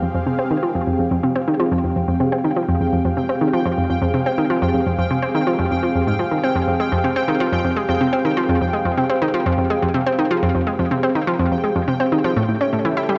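A round, nasal analog pluck sits up front, playing a repeating riff from F2 to E4. Its wave-folded tone carries chorus, cassette-tape grit and tape echo. Behind it, a sweeping resonant pad holds full-bodied, detuned sustained chords between C4 and F5, its filter swell giving the sound an evolving shape. High above, a pulsing gated texture sits quietly on G5, its tempo-synced triangle tone carrying chorus and its own reverb. This hypnotic, expansive stretch of sequencer-driven space music runs at 124 BPM in a straight 4/4 in F minor, resting on Fmadd9 before turning to A7 at 12.4 seconds. A moderate plate reverb opens up the space, while the cassette-tape character rolls off the top end, giving this short cut from a longer piece a hazy, dusky sheen.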